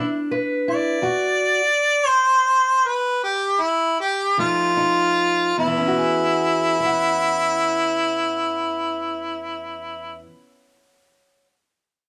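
A mellow, jazz-style harmonica with light vibrato and scooped notes opens this rollicking, soulful acoustic country blues fragment in 12/8 alongside a dark, boxy fingerpicked parlour steel-string guitar, the pace easing through the first 5.6 seconds as the plate-reverbed harmonica sounds distant and roomy in a wet little booth, until it drops out at 10.2 seconds and the guitar carries on alone to 11.5 seconds.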